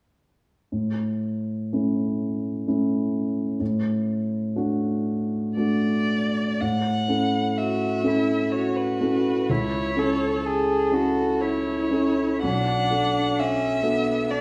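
Heard in a wet recital-hall reverb with a touch of small-room ambience, this serene, tender slow romantic movement for piano trio, cut from a longer piece, sways in an uneven, rubato three-time: a dark, mellow baby grand with long sustain plays the accompaniment alone from 0.7 seconds, a focused, up-front violin with a smooth top takes the melody from 5.6 seconds, and a rich, even, close cello adds a second line from 7.6 seconds, both bowed strings singing with vibrato.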